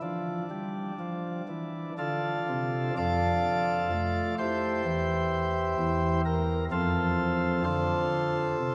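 Grave and dark, this short excerpt from a longer classical chorale-style piece moves at a slow 60-64 BPM in 4/4, a solo chamber organ on a full principal chorus voicing sounding up front with a distinct chiff as it spans from E2 to D5. The harmony opens on D minor before settling into F major at 3.0 seconds, passing through C/E and returning to F by 6.7 seconds. A resonant church reverb with a 3.5-second decay surrounds the organ, lending the chords a lingering, cavernous halo.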